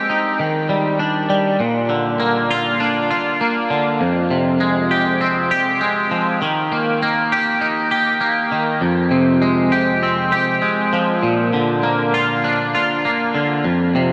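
A lone twangy electric guitar opens this rock piece and plays by itself from 0.0 to 14.1 seconds, a bright, clean, picked tone with a scooped edge, sitting up front in the mix. Moving at 100 BPM in a straight 4/4, the music feels melancholic yet cathartic, with the guitar treated with analog chorus and tape echo. A huge, wet ambient reverb with a 7.5-second tail soaks the whole sound, giving it a dreamy atmosphere. After a brief Ebmaj7 opening, the harmony at 1.6 seconds cycles through Bb, Fmadd9 and Eb, returning to Fmadd9 before landing on Bb at 11.2 seconds. The guitar ranges from F2 up to G4, and this short stretch is cut from a longer piece.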